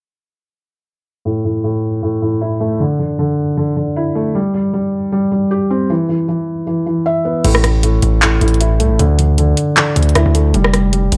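A dry, dark mix opens on a soft, felt-muted upright piano under a low-pass filter sweep, playing power and suspended chords in an eerie, melancholic half-time trap groove at 155 BPM, until at 7.4 seconds a heavy, distorted 808-style bass and a trap drum kit with bright hi-hats, handclaps, rim clicks and crash cymbal join up front for the rest of this cut-down fragment.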